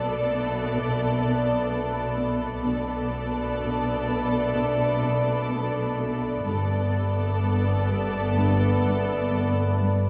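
Mysterious and ominous, this slow cinematic suspense cue at 63 BPM in B minor, cut from a longer piece, sets a smooth-topped violin melody over a lush second violin line, intense bowed violas and a very quiet, expressive cello riff, while mellow French horns sustain chords in the background beside a pulsing, tempo-synced gated texture with chorus. Rich cellos and double basses anchor the bass, a huge, bright impact is barely audible in the opening 2.6 seconds, and the harmony shifts from Bm7 to Gadd9 at 6.5 seconds, all heard from further back in a wet recital hall.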